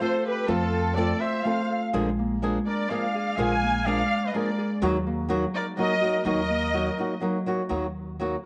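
This mariachi-flavored Mexican folk fragment, in a straight 3/4, carries a romantic yet proud mood. A lush, bowed violin section leads the melody with vibrato, portamento and a soft attack, while a trumpet with a smooth top and light vibrato adds a classical-style second line. Fingerpicked flamenco guitar sits up front in the accompaniment, joined by a mellow, ringing Celtic harp playing arpeggios. A woody, growly pizzicato upright bass enters at 0.5 seconds, and the harmony moves from F to Bb7 and settles on Ebm. The violins and trumpet stop at 7.2 seconds, the harp carries on until 8.5 seconds, and the whole recording sits in a wet spring reverb with a rolled-off top end.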